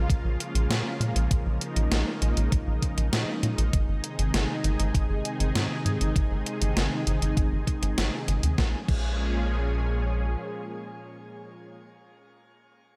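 Nocturnal and nostalgic, this synthwave excerpt moves at a steady, straight pace, with a silky, detuned analog string pad holding sustained chords under ensemble chorus, sidechain pumping and shimmer reverb while a tight, punchy sequencer bass drives underneath with a sawtooth-and-square pluck and a filter sweep running until 8.6 seconds. A thumpy, overdriven electronic kick and a gated 80s digital drum machine of snare, hi-hat and crash cymbal, its snare drenched in gated reverb and both re-recorded in a small room, play from 0.1 to 9.1 seconds. After the drums stop, the bass carries on to 10.4 seconds and the pad lingers alone until 11.8 seconds, all set in a light digital ambience.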